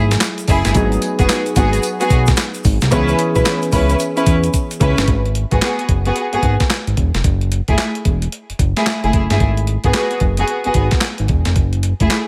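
Bouncy and punchy, this new jack swing R&B passage, cut from a longer piece, rides a swung sixteenth-note groove in 4/4. A crisp 8-bit digital drum machine sits up front with a thumpy kick, a medium-tuned snare, handclaps, hi-hat and tambourine, its sampler-style hits carrying a tape-warm, small-room character, and a drum fill lands at 4.5 seconds. Beneath it a fat analog bass, detuned and saturated, blends sawtooth and square waves with a filter sweep and sustained, mellow low notes, while a grainy, bright tube shaker sits in the background during the opening stretch. Round pulse-wave keys with chorus and a filter sweep supply decaying chords over F#m9, G#m7 and C#m7 until 5.1 seconds, after which the harmony moves between G#m7 and F#m9. From 0.5 seconds a lush symphonic string section plays bowed stabs up front with vibrato, portamento and delay, and a light reverb surrounds the mix.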